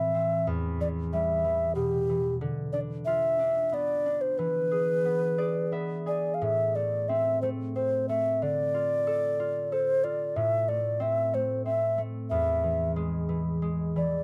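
An airy, clay-toned bass ocarina with expressive vibrato and a crisp attack sings a wistful lullaby melody up front over a mellow, ringing, fingerpicked concert harp in a gentle, rubato 3/4 at 92 BPM, with light reverb, a brief harp fill from 5.0 to 6.4 s, and a turn to A harmonic minor at 6.4 s in this short cut from a longer children's piece.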